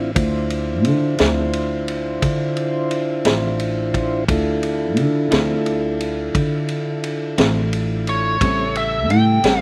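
A biting, overdriven lead guitar with slapback echo cuts in high at 8.1 s over this smoky, brooding slow blues in D minor at 58 BPM in 12/8, where a mellow, flute-like tonewheel organ with key click and slow rotary speaker holds sustained Dm9 chords up front beside a woody, thumpy gut-string upright bass and a vintage kit of punchy kick, high-tuned snare and ride. A slightly broken-up rhythm guitar through a small old amp adds tremolo and slapback echo in the background from 1.2 s, the dry sound moving to A7#9 at 8.4 s as this fragment of a longer piece closes.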